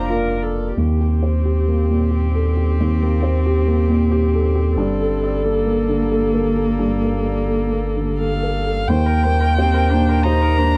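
A dry, close recording in a 1970s studio style frames this tender, hopeful neoclassical fragment for piano and strings, moving in a rubato 3/4 at around 89 BPM over chords from Bb/F through Eb6 and Gmadd9. A natural-sounding baby grand and a round, up-front sine sub bass carry the accompaniment throughout, beneath a veiled con sordino cello second line and a distant, soft-attacked muted viola that slides with portamento. The muted violin, dark and close with vibrato, takes the melody from 8.2 seconds, and a reedy, breathing harmonium returns in the background at 8.9 seconds with sustained chords.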